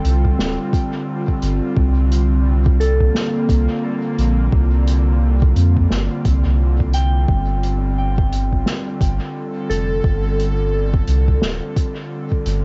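A deep, round sub bass sits up front in this hazy ambient dub excerpt, holding down the low end at 87 BPM in G minor with a swung 16th-note feel in 4/4. Above it, an airy, breathy pad sustains chords with a slow attack, its detuned, warbling tone thickened by chorus and cassette tape coloring. A soft, pure synth bell plays mellow FM arpeggios higher up, its decaying notes carried by chorus, tape and analog delay. A distant, roomy soft-mallet kit supplies hi-hat and a fat snare through dub echo, while a soft electronic kick enters at 0.2 seconds and stops at 12.4 seconds. The chords move from G5 to C5 at 1.8 seconds and back to G5 at 7.3 seconds, all within a lo-fi home cassette sound that is muffled at the top and lightly touched by reverb.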